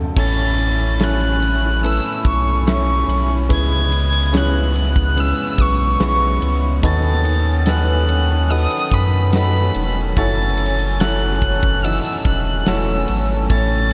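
Heartbroken and emotional, this pop ballad moves at a slow 72 BPM in a straight 4/4, heard as a short cut from a longer piece. A clear, vintage-toned grand piano opens at 0.0 s under a drum fill from a huge arena kit, whose punchy kick, fat snare and bright crash and ride cymbals then carry on through the passage. From 0.2 s the rest of the band joins: a warm, nasal violin sings the melody up front with vibrato, a reedy, sweet accordion holds sustained chords with light tremolo tuning, and a full-bodied jumbo steel-string guitar fingerpicks arpeggios in the background. A saturated, thick sub bass sits deep and up front with a fast attack, anchoring the chords as they move from A through C#m7 and B7/D# to F#m7. The whole mix is soaked in a lush hall reverb, giving it a dreamy, spacious glow.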